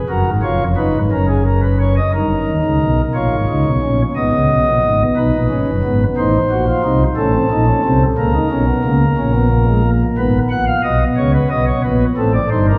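A soft pipe organ on flute stops carries this solemn yet driving baroque-style three-part fugue at 60 BPM in 12/8, tuned to A4 = 441 Hz, its romantic voicing spanning E#1 to Gb5 and sitting up front even though the listener is placed further back in a church whose wet reverb lingers 2.5 seconds, with a brief opening section giving way at 2.1 seconds to a longer passage that runs until the cut at 12.8 seconds in this fragment of a larger work.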